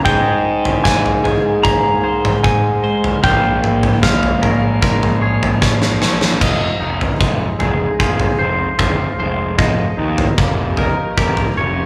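Post-rock in F minor at 76 BPM, this brooding, cinematic passage, cut from a longer piece, moves in a straight 4/4 through Absus2, Bbm7, Fm7 and Eb7/F. A dark, clean lap steel carries the slide melody with volume swells for the first 6.0 seconds, while a bright, compressed twelve-string electric guitar and a twangy, fingered electric guitar set further back play arpeggios throughout. A growly, fuzz-overdriven picked bass anchors the low end, and a very quiet, evolving wavetable pad with slow attack and detuned unison shimmer enters at 1.4 seconds with sustained chords. The huge acoustic arena kit sits up front with a punchy kick, medium-tuned snare, toms, crash and a rolled-off top, marking the move to the second half with a drum fill from 5.6 to 6.4 seconds. The band sounds as if playing live in one large studio room, bathed in moderate reverb.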